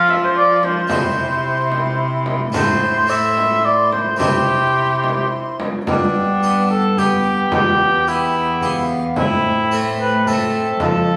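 This is a renaissance-style classical consort dance in 3/4 at 109 BPM, with a stately, courtly bearing, cut from a longer piece. The mellow cor anglais sits up front with light vibrato and a smooth top, carrying the second line. Above it, an airy, wooden alto recorder plays the melody in the background, its tongued notes showing chiff and expressive vibrato. A full French-style harpsichord plucks the accompaniment alongside a distant, roomy bassoon. A bowed cello with a dark gut-string tone holds the bass, and a deep, large frame drum sounds distant, as if from a large room. The harmony moves through F, C and A minor before the second section arrives at 5.9 seconds on G, E minor and A minor, all set in a moderate stone-room reverb and captured on a phone in the room.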